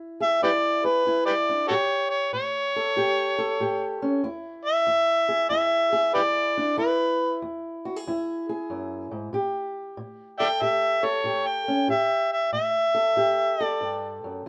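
A swung 4/4 feel drives this gritty, rollicking acoustic country blues, a short cut from a longer piece built on E7, A7 and E chords. A fingerpicked steel-string parlour guitar gives a dark, boxy accompaniment, and an amplified, overdriven harmonica carries the melody from 0.2 s with light vibrato, scooped notes, tongue slaps and a soft attack in a jazz-leaning solo. Both parts sit up front in a rough home-demo mix with plate reverb and moderate studio ambience.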